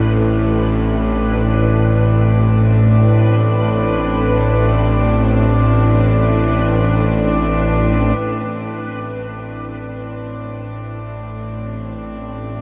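Dark ambient drone, ominous and vast, in which an up-front, tense, detuned sawtooth drone with vibrato and a noisy edge sits low beneath a nasal, reedy gut-string cello section holding period-style chords in shimmer reverb, while a reversed, granular, dreamy swelling texture floats above until 8.2 seconds, when both the drone and cellos begin fading in through 12.6 seconds, all within a dark production and a huge, wet reverb tail.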